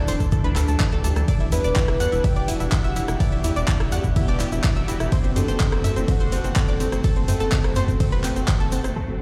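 Heard through a big sound system in a bare room with a large studio reverb, this short cut from a longer progressive house track is otherwise dry and close, with an up-front, tape-coloured kick anchoring a steady 125 BPM in 4/4. It sits in the drop from the start, driving yet dreamy, and moves from Dsus2 at 0.0 s to Em7 and then F#dim, with every melodic part, the bass and the drum kit's hats and cymbals pumping against the kick. A soft, full-bodied octave-layered lead carries the melody with vibrato and a dark, round tone through chorus, phaser and delay, while a bright analog pluck spins sawtooth-and-square arpeggios with a sub octave and a short, filtered decay. Behind them, a shimmering, ethereal pad holds detuned granular chords with an octave-up sheen and vintage 12-bit sampler grit, and a deep, wave-folded analog bass with tube saturation gives a mellow, evolving low end. The deep house kit adds handclaps, low-pass-filtered hi-hat and ride, and rim clicks, a grainy egg shaker rustles in the background, and an electronic impact hits at 9.0 s.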